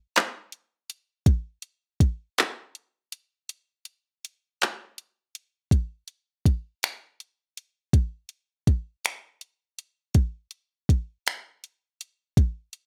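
A late-night, sultry R&B excerpt in a slow 6/8 at 54 BPM, where an up-front electronic drum kit of finger snaps, handclaps, soft kick and warm hi-hat plays from 0.2 s, with a break at 3.5 s before a new section at 5.7 s, all set in light reverb within a rough home-demo mix.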